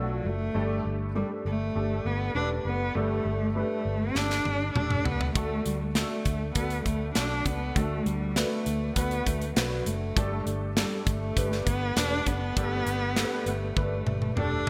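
A bowed cello opens this anthemic piano-driven pop excerpt, carrying the melody up front with vibrato, portamento and a soft, expressive attack, while an upright piano and a muted electric bass sound beneath it from the first moment. The piano is woody and intimate, its action noise audible and its tone thickened by an ensemble chorus, and the foam-muted fingered bass sits dark, round and amped in the low register. The harmony moves between D and Gsus2 at a straight 100 BPM in 4/4. At 4.2 seconds an acoustic drum kit arrives with a fill, bringing a punchy kick, a medium-tuned snare, hi-hat and toms, polished and airy with gated reverb, and another fill closes the passage at 13.8 seconds. A lush hall reverb and bright 1980s-style digital production give the whole a glowing, expansive feel.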